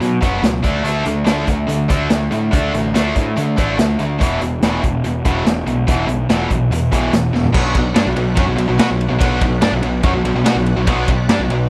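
A gritty, punchy garage drum kit sits up front in this swaggering, brooding classic rock excerpt alongside a pair of tight distorted guitar riffs, one forward and one in the background, and a fuzzed, overdriven picked bass. A drum fill at 7.3 seconds then ushers in a very quiet, shouting tonewheel organ through a slow rotary speaker from 7.6 seconds, with the drums breathing in a small, pumping room and everything set in small room ambience.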